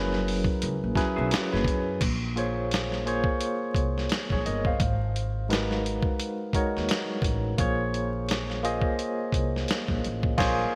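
R&B with a neo-soul lean, this late-night, introspective excerpt moves at 86 BPM in 4/4 with a swung sixteenth feel, set in Bb minor and cut from a longer piece. A barky tine electric piano, lightly overdriven with a medium tremolo and heard through a combo amp, sits up front carrying the chords, moving from Gb9sus4 to Bbm9, Abm9 and back to Bbm9. Beneath it, a pizzicato upright bass with steel strings gives a woody, dark low end, while a gritty, compressed sampler-style drum kit with a thumpy kick, medium-tuned snare, hi-hat and crash sits forward, its gated reverb adding punch. A dark, slightly broken-up electric guitar through a small old amp slips in from the background only briefly, between 1.2 and 2.0 seconds. The mix pairs a bright 1980s-style digital sheen and a lush hall reverb with vinyl crackle, and the band closes on an accent at 10.4 seconds as the kick drops out.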